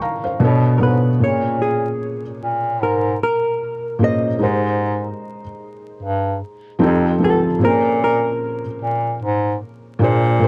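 A clear bass clarinet with vibrato carries the bass line from 0.4 seconds beneath a dark, clean hollow-body electric jazz guitar melody that enters at 0.8 seconds, while a soft, felt-muted upright piano with audible action noise and a cassette-tape tint accompanies from the start in this melancholic, reflective lo-fi hip hop excerpt, set in a small room with light reverb, vinyl crackle and a warm production.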